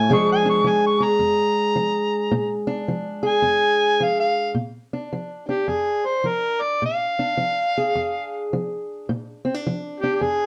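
Laid-back and gritty, this short cut from a longer acoustic country blues duo swings at 107 BPM in Bb mixolydian, with an amplified, overdriven harmonica playing a jazz-style solo full of vibrato, tongue slaps and scooped notes from 0.0 to 4.6 seconds over a boxy, dark parlour steel-string guitar fingerpicked with audible finger squeak, both up front in a moderate studio reverb and a dark production that opens on a Bb7 chord.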